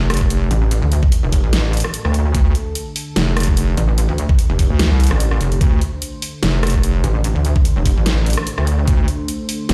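A half-time, swung 147 BPM groove drives this heavy, menacing wobble dubstep excerpt in D minor, where an up-front knocking kick and an overdriven kit with a huge snare and bright hats push alongside a saturated square-and-sine wobble bass and a pulsing pluck wobble bass entering at 0.5 s, while a lush, detuned sawtooth pad warbles with sidechain pumping in the background and a barely audible electronic impact opens the track.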